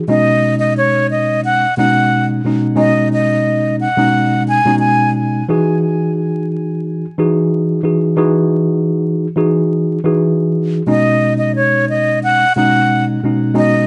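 Vinyl crackle and a moderate studio reverb lend this short cut from a longer hip hop piece a dusty, muffled sheen, its top end rolled off. The mood is nostalgic and soulful, carried by a lightly swung groove. A mellow tine electric piano, worn and slightly out of tune yet clean and direct, sits up front as the accompaniment throughout, moving through B6/9, Emaj9 and back to B6/9. A breathy concert flute takes the melody up close, with a soft attack, a straight tone and a touch of delay, singing between C#5 and G#5. It drops out at 5.1 seconds, leaving the electric piano alone until the flute returns at 10.9 seconds and carries on to the close.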